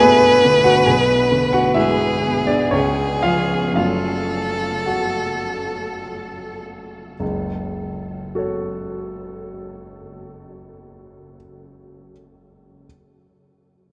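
A rich, focused solo violin sings a yearning melody with vibrato up front for the first 6.6 seconds over an intimate, vintage-toned concert grand piano with deep bass and audible action noise, which plays on alone until 12.9 seconds in this elegiac romantic classical fragment in F# minor and 3/4, its rubato pulse of 51-69 BPM slowing through the opening 7.2 seconds as the harmony moves from Bm7 through C#7 to F#m inside a vast, echoing space bathed in huge ambient reverb.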